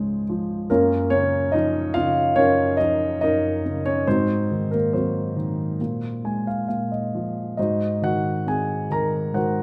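A dark, mellow grand piano sits up front with audible action noise in an intimate, peaceful classical solo cut from a longer piece, drifting in free rubato through Gbmaj7 and Ab9 harmonies and adding a brief fill from 5.8 to 7.6 seconds, all wrapped in moderate recital hall reverb.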